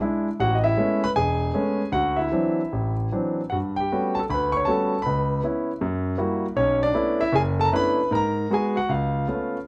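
A concert grand piano opens this short solo jazz cut, its tone clear and intimate, with audible action noise, deep bass and long sustain placed up front in a large studio's moderate reverb. The playing feels cool and swinging yet loosely rubato, moving through rich harmonies from Amaj9 and D9 to Gmaj9#11, then C#m7, F#7b9 and Bm11. It settles on G#m9 and C#7b13 before the piano stops at 9.6 seconds.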